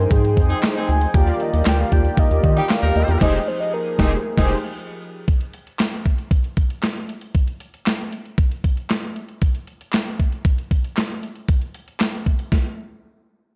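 A dark, dry production frames this feel-good, danceable slice of early-eighties boogie funk, where a soft, round octave-layered synth lead with chorus and phaser carries the melody over mellow, brassy synth brass, a shimmering pulse-width pad and a rubbery, bouncy square bass, joined by a clear horn section with light vibrato. A band accent lands at 3.2 s, and the melodic parts fall away by 5.3 s. This leaves the thumpy, overdriven 12-bit drum machine, re-recorded in a large room, driving on with a very quiet, hollow group handclap until a stop at 12.5 s.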